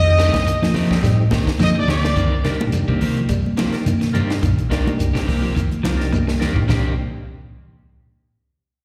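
A lightly swung 106 BPM afrobeat groove in C dorian drives this intense, defiant live fragment, as a round, dark hollow-body bass anchors a dry cocktail kit with punchy kick and high-tuned snare, grainy shekere and thin-skinned congas. A tight, brilliant horn section with light vibrato states the melody up front until 2.4 seconds. Behind it sit a percussive tonewheel organ through a slow rotary speaker, clean semi-hollow guitar arpeggios and twangy, slightly broken-up guitar stabs, all under slapback echo and recital-hall reverb, with drum fills closing the first two sections, the first leading into the shift from F9 to Cm7 at 2.2 seconds.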